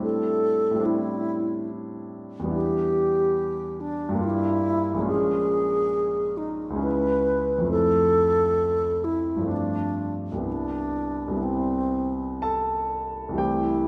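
An alto flute sings the melody up front with a pure, straight, tongued tone that is expressive yet distant, giving this dreamy, luminous impressionist duo its gentle glow. Beneath it, a concert grand piano supplies the accompaniment, its natural sound anchored by a deep bass. The music sways in 3/4 with a free, rubato feel, and both instruments play throughout the roughly 13.9-second fragment, which is cut from a longer piece. The harmony drifts through rich extended chords, moving from Cadd9 over A through Em7, Gm7, Bbm7 and Dbm7 before settling via Fmaj7 and G9sus4 onto Cmaj7 at 10.5 seconds. A moderate concert hall reverb surrounds the pair, adding a soft sense of space to the floating mood.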